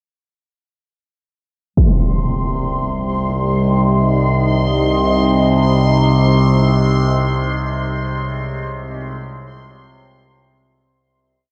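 In free time, this short dark ambient drone piece in C phrygian feels cavernous and dark. It opens at 1.8 seconds with a huge, bright impact, filtered low and placed up front, as a bubbling, resonant texture of random filter steps enters on a held high C6. An overtone-sweeping drone follows at 2.2 seconds, a sawtooth and sine tone with moving overtones, sustained up front between C2 and C3. A deep, moody pad of detuned unison sawtooth, sine and triangle with a sub octave then swells in slowly with sustained chords, shifting from C minor to Dbadd9 over C. The synth parts carry chorus and their own reverb, inside a huge, wet space with a long tail, and a worn, warbling cassette-tape character gives the sound a drifting pitch. The piece fades out from 6.4 seconds to its close.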